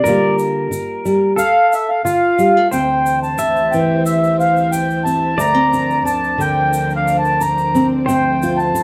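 A reedy, mellow accordion carries the melody up front in this wistful, intimate acoustic folk excerpt at 90 BPM in 4/4, with a featured turn over the opening 2.7 seconds. Fingerpicked classical nylon-string guitar with audible finger squeak supplies the accompaniment, while a clean, compressed pedal steel guitar with slide, volume swells and slapback echo adds a quieter second line, and a grainy, distant egg shaker sits low underneath. At 2.7 seconds a chamber string section enters with bowed, sul tasto sustained chords and light vibrato, and the ensemble is heard from further back in a small, reverberant room.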